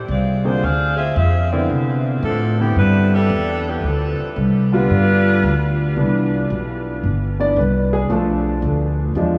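A swung 4/4 pulse at 112 BPM drives this joyful, brassy big band swing piece in C major, tuned slightly flat to A4 = 437 Hz and cut from a longer performance. A dark, woody upright bass plucked on steel strings sits up front from the opening beat to the end. A mellow saxophone section carries the melody with vibrato and a soft attack, playing as a tight jazz-style unit through a tape echo until 5.8 seconds. Alongside it, a clear, intimate upright piano comps through an analog chorus, its action noise audible, before taking a solo from 6.0 seconds to the close. The harmony moves from a rootless Bb9 through Cmaj9, Dm7 and G7, then returns to Cmaj9 and lands on Bm7b5. A huge ambient reverb with a 7.4-second tail bathes the mix in a dreamy studio glow.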